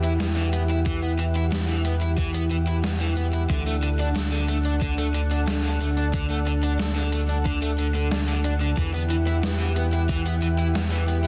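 A thick, detuned unison pad carries this cinematic, driving synthwave excerpt, holding sustained chords that move from Emadd9 to D and back, its warbling, vintage tone pumping under sidechain and trailing into shimmer reverb. A round, deep analog bass sits up front beneath it, while an overdriven electric guitar plays a compressed, picked riff soaked in lush chorus, delay and shimmer reverb. A gated 80s digital drum machine supplies hi-hat and a gated-reverb snare with overdrive, joined by a thumpy, overdriven electronic kick from 0.9 to 10.2 seconds, all set in a moderate hall with a dense, heavily limited master.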